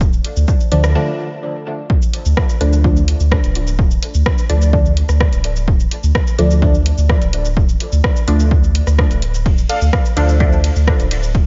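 A round, sine-like sub bass pumps under a punchy, overdriven electronic kick and a gritty deep house kit of hi-hat, ride, rim click and shaker, its dub echo trailing into a cavernous, nocturnal dub techno groove cut from a longer piece. From 0.7 seconds, muted, detuned sawtooth chord stabs drift through a phaser and a moving notch, dark and decaying, with a brief break at 1.0 seconds before the same section returns. Near the end, at 9.7 seconds, warbling lo-fi synth keys add a short, mellow, nostalgic riff with chorus and echo, all within a dim, softly reverberant digital space.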